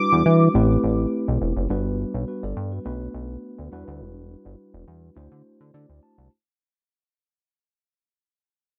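Early-eighties boogie funk in E minor at 104 BPM, this slick, funky clip from a longer piece fades out across its 6.3 seconds over a chord progression of Em9, Am9, Gmaj7, Bm7 and D9. A velvety, detuned sawtooth synth lead with chorus, vibrato and tape echo sounds a single high melody note only until 1.0 s, while a mellow, clean tine electric piano carries the accompaniment up front and adds a fill from 5.5 s. Underneath, a glossy, nasal chorused synth bass with a plucky filter and pulse-width movement drives the low end, and the whole sounds dry and close, like a 1970s-style studio recording.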